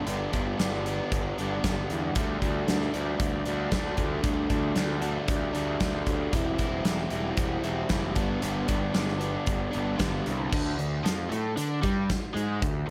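A straight 4/4 pulse at 115 BPM drives this sunny classic rock excerpt, where a bright, double-tracked overdriven electric guitar riff sits up front over a growly fuzz picked electric bass and a huge arena drum kit with a fat snare and punchy kick in a big room, moving from G through Dsus4 and C/E back to G before shifting to a D5 section at 10.5 seconds, all under light reverb.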